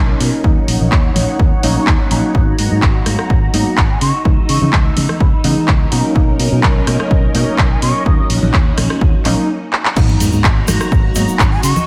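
A groovy, sensual filtered disco house groove at 126 BPM in G# minor, with a punchy tape-warm kick driving a bright-hatted house kit and close, dry shaker and congas that pump under a growly fingered bass, a dark detuned polysynth comp and a lush phased string machine, while a breathy, mellow flute carries the melody from 3.9 seconds through an analog delay before a brief stop, drum fill and sub drop mark the drop at 10.0 seconds.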